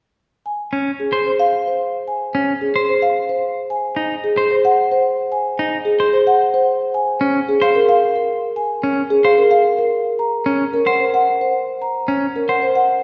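Bright and hypnotic, this brief cut from a longer piece is minimalist classical pattern music in triple metre with a straight feel. A marimba played with soft mallets carries the melody from 0.5 seconds, its tone mellow and round and placed up front in the mix. Just behind it, a clean electric guitar enters at 0.7 seconds with picked arpeggios that sound twangy and compressed, sitting lower and quieter than the marimba. The harmony drifts from a Dbmaj7 chord with its third omitted through Ab to Bbm7, keeping the pattern gently shifting. A deep scoring-stage reverb with a long tail gives the recording the spacious air of a church or concert hall.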